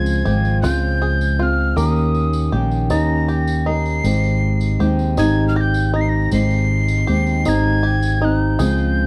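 A breathy wooden whistle carries the melody high above this slow, nostalgic acoustic folk excerpt in 6/8 and Ab major; its vibrato is a little unsteady, its chiff is caught close to the microphone, and it is bathed in plate reverb. Up front, a picked steel-string guitar with audible finger squeak and a round fretless electric bass move through Dbmaj7, Eb7 and Abmaj7 at 53 BPM. A twangy, fingerpicked banjo spins bright arpeggios and a jingly vintage tambourine sits in the background, all within a dark, warm production with light reverb.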